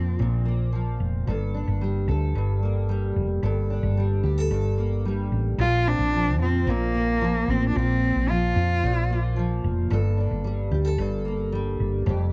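A clear, focused, bowed cello with vibrato carries the melody, sounding briefly at the start and again from 5.6 to 9.4 s, over double-tracked fingerpicked steel-string acoustic guitar with a full-bodied dreadnought tone and a round, hollow-body fretless electric bass, giving this sunny, easy-going acoustic pop piece at 111 BPM a dry, close 1970s-style studio sound in a small room as the harmony moves between Bbsus2 and Gmadd9.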